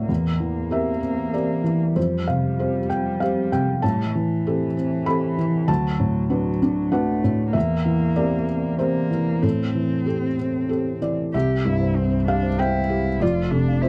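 A felt-muted upright piano sits up front in this short neoclassical excerpt, its soft, intimate tone carrying audible action noise as it plays the accompaniment in a rubato three-beat lilt from start to finish. Beneath it, a muted cello plays con sordino as a second line throughout, dark and veiled with vibrato and a soft bowed attack. The harmony drifts through chords such as C7/E, Fsus2, Am7 and D6, giving the piece a longing, reflective mood. At 11.3 seconds the music moves to a new section on C and then F, where a bowed double bass enters distantly in the bass and a woody, round folk marimba with soft mallets adds quiet arpeggios in the background, touched by a slapback echo. The sound is dry and close, in the manner of a 1970s studio, with only light reverb.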